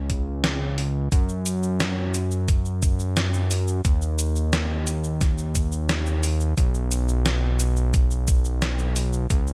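Driving and cinematic, this short synthwave passage, cut from a longer piece, moves in a steady, straight 4/4 pulse. A fat, thick analog bass carries the low end, its detuned sawtooth tone given a quick filter pluck with a fast attack before it sustains and evolves, while sidechain pumping makes it breathe around the beat. A thumpy electronic kick sits up front with a tape-warm, sampler-style character and a touch of studio reverb. Alongside it, a detuned 8-bit digital drum machine supplies cabasa, hi-hat and a medium-tuned snare, its studio and gated reverb adding punchy, clipped ambience. The bass opens alone at 0.0 seconds, the drums join at 0.1 seconds, and all three parts hold together as a single section until about 9.5 seconds, set in a dry, close-sounding mix.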